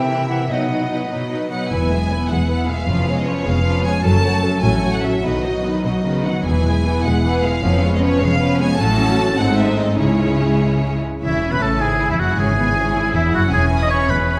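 Classical excerpt in a rubato 6/8 at 96-106 BPM, restless and dramatic, where lush vibrato violins carry the melody over a distant second violin line, smooth violas, background cellos and a bright ringing harp's arpeggios; a pure-toned flute line appears only until 1.1 s, deep double basses and mellow close-miked French horn chords join at 1.7 s, and the key shifts from E major to C# minor before an up-front solo oboe takes a second line from 11.2 s, all set in a spacious scoring-stage reverb with prominent vinyl crackle.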